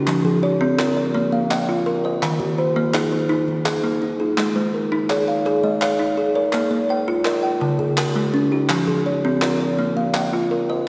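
A bright, woody kalimba plucked with the thumbnail rings up front over a second, mellow and soft fingertip-plucked kalimba, with hollow, close and dry group handclaps from 0.1 s, forming a hypnotic, rippling mbira-style interlocking cycle in 12/8 in the southern African traditional style, all set in a church-like hall's long, wet reverb across this short cut from a longer piece.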